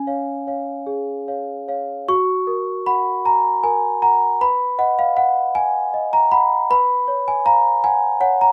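Tender and dreamy, this short classical lullaby is cut from a longer piece and played by a solo celesta in F# major at a slow 52 BPM in a straight 6/8. The celesta has a bell-like, delicate sweetness, its hard felt hammers giving a bright, full tone that sits close and up front across a range from C#4 to C#6, set in a light reverb. After an opening section on C#, the music shifts at 2.1 seconds into a new section that moves through F# and B before settling on a C#7/B chord at 6.7 seconds.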